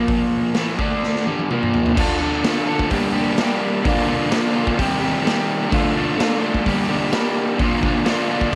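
Gritty and up front in a small, lightly reverberant room, this menacing garage rock excerpt in a straight 4/4 sets a crunchy, double-tracked overdriven electric guitar riff spanning G2 to A4 over a raw, saturated acoustic kit of punchy kick, medium-tuned snare, hi-hat, toms and crash cymbal, with a drum fill from 1.0 to 2.0 seconds leading into a Dm, Gm, Bb, Cm progression from 2.0 seconds.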